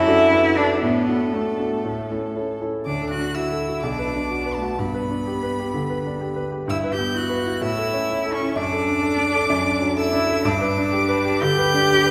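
Bathed in a wet, two-second hall reverb, this stormy, dramatic fragment of a quick classical-period piano trio movement, played with rubato, sets a close, smooth, vibrato-rich bowed violin melody over a focused, clear cello second line and the up-front, vintage-toned accompaniment of a concert grand with deep bass, all three playing throughout and moving into a new passage at 2.9 seconds.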